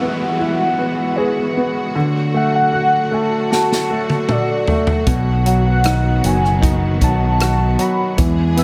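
Heartfelt and emotional, this 77 BPM pop ballad excerpt pairs a velvety, chorused synth lead melody with clear concert grand piano and lush bowed strings over Eadd9, D and B chords. A background electronic downlifter runs until 5.1 seconds, a natural drum kit enters with a fill at 3.5 seconds, and a bright fingered electric bass joins at 5.1 seconds, all in light small-room reverb.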